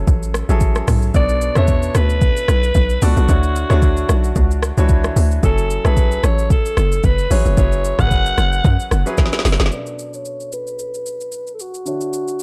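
A bouncy, hollow log drum bass and a bright concert grand piano open this soulful, hypnotic amapiano excerpt at 112 BPM, joined at once by a soft-kicked, woody-snared R&B drum kit with crisp hats and then by a raspy, growling alto saxophone melody with vibrato and tape echo from 1.2 seconds, moving through F#m9, Bm9 and Dmaj9 in a dark, dry production until a drum fill arrives and the bass drops out at 9.7 seconds as a filter sweep begins.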